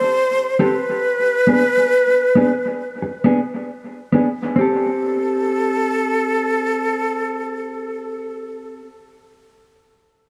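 A breathy concert flute leads this deep, meditative reggae fragment, its tongued, expressive melody carrying vibrato and lifted highs up front, trailed by dub echo. A mellow electric guitar enters at 0.6 s with dark, clean, fingered accompaniment, compressed and also up front with its own dub echo, moving through Am7 and Bm6 chords before returning to Am7 at 4.6 s. Moderate spring reverb and studio ambience give the echo-heavy mix a spacious, unhurried feel.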